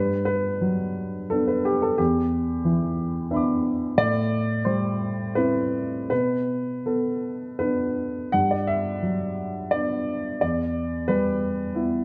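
Neoclassical minimalist piano in a tender, peaceful 3/4 with a rubato feel, played by a single up-front baby grand with a natural tone, cycling through seventh chords from Gmaj7 through Em7, Am7 and Bm7 across a range from E2 to D6, set in a moderate recital-hall reverb with a dark production, in a 12-second cut from a longer piece.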